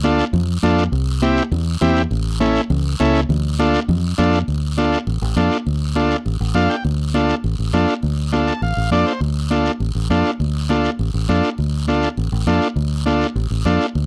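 A driving, straight 4/4 cumbia pulse at 203 BPM in D minor sets a passionate mood in this short cut from a longer piece, with high-tuned congas played with soft hands sitting bright and thin in the background while a raspy guiro scrapes close by. Up front, a fingered electric bass with a foam-muted, direct and amped tone anchors the low end as an overdriven combo organ, vintage and buzzy with light vibrato, carries the accompaniment through a Dm, C, A progression. Once the second section begins at 4.5 seconds, the organ adds short fills at 6.4 and 8.3 seconds, all captured in a dry, close 1970s-style studio sound.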